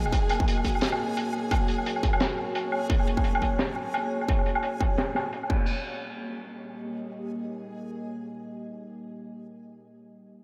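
Dark and cinematic, this half-time drum and bass excerpt at 173 BPM in Eb minor sets a deep, moody sawtooth pad with a sub octave, chorus and sidechain pumping beneath a reversed, granular triangle texture that swells brightly in the upper register. Up front, a distorted, tape-warm electronic kick sits alongside a gritty breakbeat kit with a high-tuned snare, hi-hat, woodblock and dark, rolled-off cymbals, all swung on the 16ths and shaped by a filter sweep until both drum parts stop at 5.6 seconds. Just before that, the harmony settles from a rootless Eb minor onto Eb, and once the texture fades the pad sustains alone, lingering in a dreamy six-second reverb wash until 9.2 seconds.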